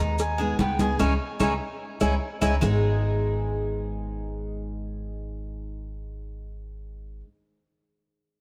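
Heard from further back in the room through a moderate plate reverb, this sultry cut from a longer Cuban son and guajira piece in G# minor moves at 148 BPM in 4/4, with a pure, straight-toned concert flute melody that ends at 2.5 s over fingerpicked classical nylon-string guitar, bright metallic Cuban tres arpeggios, and a dark, thumpy pizzicato upright bass up front, while thick-skinned damped congas, tight high cowbell and bongos, woody claves and grainy maracas drive a band accent from 1.0 s and a drum fill from 2.0 s before the percussion drops out at 2.7 s, leaving the strings on G#m.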